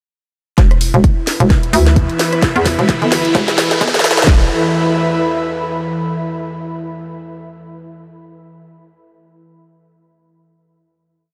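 A hollow, knocking FM bass with tube saturation and sidechain pumping drives this short, gritty and aggressive bass house piece at 130 BPM with a 16th-note swing. Two up-front house drum kits supply a punchy four-on-the-floor kick, cracking snare and handclaps alongside programmed hi-hats and rim clicks, while a drum fill, filter sweeps and a background riser from 1.7 seconds push a build-up that runs until 4.3 seconds. A deep, moody sawtooth pad with chorus enters at 1.8 seconds beneath an airy, breathy pad of slowly shifting chords that sustains alone into a final chord ending at 6.1 seconds, all set in a dreamy mix soaked in huge ambient reverb.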